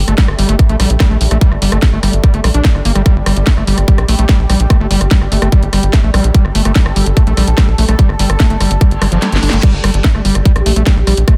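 A screaming, squelchy acid line leads this hypnotic psychedelic trance excerpt, its resonant sawtooth riff carrying distortion, chorus, dub echo and sidechain pumping over an up-front electronic kick and a tight, punchy sequencer bass with a plucky filtered attack. Beneath them, a mellow, bubbling texture of sustained chords steps through random filter changes in its own reverb, while a garage drum kit adds a cracking snare, rim clicks, crash and warm hi-hats. A faint zap sounds at 6.1 seconds, and a reverse cymbal arrives at 9.0 seconds, followed shortly by the kick dropping out for a brief drum fill, all within a dense, heavily limited digital master.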